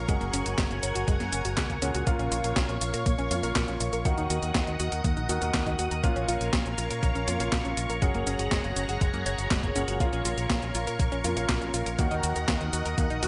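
A straight 4/4 pulse from a thumpy electronic kick and a tape-tinged 12-bit drum machine, with its up-front snare, handclaps, hi-hat and cabasa wrapped in gated reverb, drives this danceable, bittersweet italo disco excerpt, where a punchy, envelope-filtered fingered electric bass sits under intimate grand piano stabs with digital delay, nasal, detuned analog pluck arpeggios with phaser and chorus float in the background, and a lush, vintage string machine holds mellow sustained chords over a cycle of Gbadd9, Bbm and Ebm.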